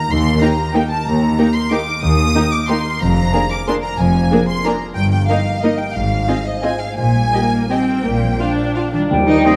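In 3/4 with rubato, this elegant, sweeping orchestral ballroom waltz in Eb major moves between 159 and 200 BPM, cut from a longer piece. A clear, focused violin section carries the lush bowed melody over ringing, thumb-plucked harp arpeggios, rich cellos and double basses, a smooth viola accompaniment and a soft-edged second violin line in the background, all set in a moderate scoring-stage reverb. Near the close, at 9.1 seconds, an airy silver flute, a present bassoon and round soft-mallet timpani arrive, joined by a dark, distant horn section and a clear oboe just before the end.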